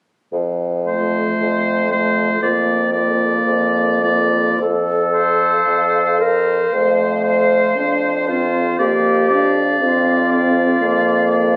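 Moving in a rubato 4/4 at roughly 50-60 BPM, this slow romantic movement for wind quintet in F major unfolds with a tender, lyrical mood, tuned to A4 = 436 Hz and cut from a longer piece. A mellow, roomy bassoon opens at 0.3 s, holding a low F2 bass that sits up front despite a distant quality, with light vibrato. At 0.9 s the bright oboe joins as a second line up front, while a clear, soft-attacked clarinet and a French horn with light vibrato fill in the accompaniment beneath it, all in a poised classical style. The harmony rocks gently between F and Bb over F, and at 5.1 s a hollow, pure silver flute enters with the melody on F5, its crisp attack and vibrato heard from a distance in the background. The sound carries the light club reverb and ambient character of a phone recording made in the room.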